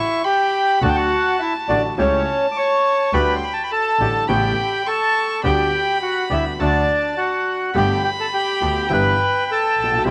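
A reedy, up-front bandoneon opens with a passionate, elegant tango melody in G major, shadowed by a bright, nasal bowed violin carrying a second line with vibrato and a cassette-tape color. At 0.8 seconds a woody, slightly detuned upright piano with the same tape character joins in accompaniment, along with a focused, smooth bowed double bass and a second, dark and very quiet bandoneon playing stabs. The rubato feel around 104 BPM and the light studio reverb give this fragment of a longer piece the intimate, vintage air of a home cassette recording.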